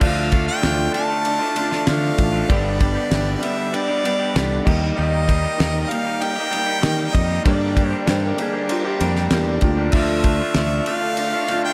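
A harmonica sits up front and carries the melody, its vibrato and scooped notes given a pop-style punch and a trail of slapback and tape echo. This hopeful, nostalgic folk rock and heartland rock passage is cut from a longer piece and moves at a straight 97 BPM in 4/4, with chords running through D minor, G, E-flat and G minor before returning to D minor. A dry 70s drum kit with a fat snare and tight kick uses crash, ride, kick and snare, while a round, punchy fingered electric bass sits up front until 10.8 seconds. An electric guitar through a small old amp plays a bright, twangy, slightly broken-up riff with slapback echo, and a picked steel-string acoustic guitar with audible finger squeak stays in the background. Underneath, a clear concert grand piano with deep bass and long sustain and a reedy, shimmering musette accordion holding sustained chords are both very quiet. Between 8.1 and 9.9 seconds, a warm, slightly broken-up electric slide guitar adds a brief second line in the background, and the whole passage sits in light reverb and studio ambience.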